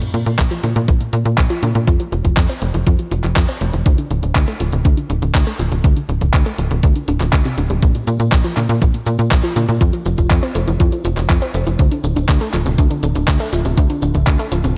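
Italo disco at 121 BPM in D minor, melodramatic and nostalgic, where a tight, punchy, nasal sequencer bass drives up front beneath a round, detuned analog pluck arpeggio carrying chorus, vintage 12-bit sampler grit, diffuse ambient delay and a filter sweep throughout. A thumpy sampler-style electronic kick and a clean 12-bit drum machine of cabasa, handclaps and hi-hat, both re-recorded in a small room, keep time as the harmony moves through Bb, F and Dm under light reverb in this short cut from a longer piece.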